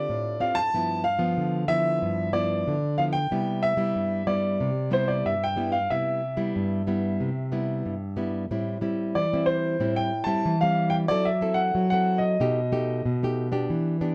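A warm baby grand piano sings the melody up front with a natural tone and long sustain in this sunny, lively samba excerpt at 92 BPM in C major. A small, dark nylon-string guitar is fingerpicked close beside it, finger squeaks audible, moving through Dm11, G6 and Cmaj7 before the harmony shifts at 8.5 seconds to Am7, F#m7b5 and B7alt. The piano drops out at 13.1 seconds, leaving the acoustic guitar alone until 14.1 seconds in a moderate studio reverb.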